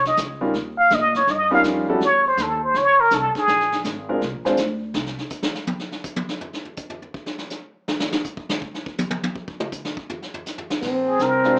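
A breathy, plunger-muted trumpet with a whispered wah-wah tone leads this relaxed, playful small-group swing excerpt over woody pizzicato upright bass, a long-sustaining baby grand piano and a dark-cymballed brush kit, before the drums take a solo from 4.9 to 10.8 seconds and a brilliant, punchy trombone with scooped notes enters with the returning trumpet, bass and piano in the final moments, heard through a small club's ambience and a small-speaker sound.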